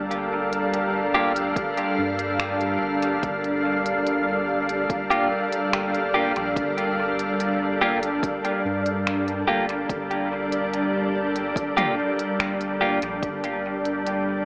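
Opening on a bright, detuned organ-like pad holding a Gm7 chord up front with ensemble chorus, over a round, tube-saturated sub bass tucked in the background and an electronic kit of finger snaps, crisp hi-hat and toms trailing dub echo, this hazy, meditative ambient dub excerpt in G minor at 72 BPM adds clean, compressed electric guitar stabs with their own dub echo from 1.1 seconds and a deep electronic kick from 1.6 seconds, all steeped in a wet spring reverb and an AM radio tone.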